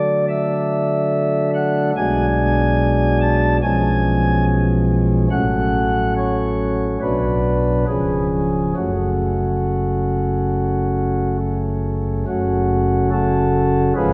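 Heard through worn, warbling cassette tape with wavering pitch and a wet church reverb, this dark, grave classical chorale excerpt at 70 BPM in F# minor features a solo pipe organ on soft, warm flute stops, romantically voiced and up front from C#1 to A5, moving in free rubato through D, G#m7b5/B, C#7/B, F#m/A, Bm and C# before arriving on F#m at 8.8 seconds.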